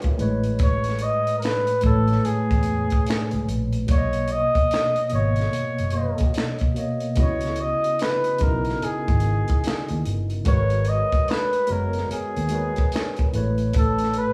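R&B with a neo-soul lean, this relaxed, warm-hearted piece moves at an unhurried 73 BPM in 4/4 with a swung sixteenth-note feel, heard here as a short cut from a longer work. A breathy flugelhorn carries the melody up front, its soft attack, light vibrato and whispered, intimate tone giving the line a smooth, pop-style solo character. Beneath it, a mellow tine electric piano plays clean accompaniment through its built-in speakers, while a vintage muted fingered electric bass enters at 0.2 seconds with a dark, round, foam-muted sound. A compact cocktail drum kit supplies finger snaps, hi-hat, a punchy kick and a high-tuned snare, its dark, rolled-off top keeping the groove soft yet present. The harmony drifts through lush chords, from Amaj9 and Bmaj9 to C#m11 and G#m11, before settling on Aadd9 at 13.3 seconds. The band sounds as if playing live together in one room, wrapped in a moderate stone-room reverb that adds gentle depth.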